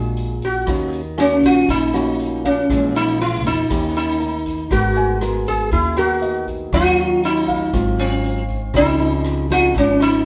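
A lightly reverberant live-room sound opens this melancholic, smooth bossa nova fragment in Eb minor, moving at 119 BPM in a straight 4/4 and tuned to A4 = 444 Hz. Up front, a bright, buzzing sitar carries the melody with shimmering sympathetic strings, over a warm, thumb-plucked classical nylon-string guitar and a woody pizzicato upright bass. A big-room drum kit with a punchy kick, hi-hat and rim click joins at 0.2 seconds, and an intimate baby grand piano with audible action noise sits in the background from 1.2 to 8.8 seconds, as the chords move from Bb7b13 and Ebm7 toward G#m9 and close on C#maj9.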